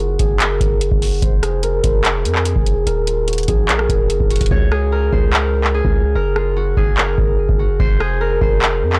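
A ringing, fingerpicked concert harp melody, treated with low-pass filtering and digital delay and swept by a filter through the first 4.5 seconds, opens this wistful, dreamy half-time trap hip hop fragment alongside a deep, mellow, sine-toned 808-style bass with long decaying notes. A booming, dry analog drum machine joins at 0.2 seconds with a deep kick, metallic hi-hats, handclaps and rim clicks, and its hi-hats drop out at 4.5 seconds, while a digital ambience and a blown-out, overdriven recording sound colour the mix.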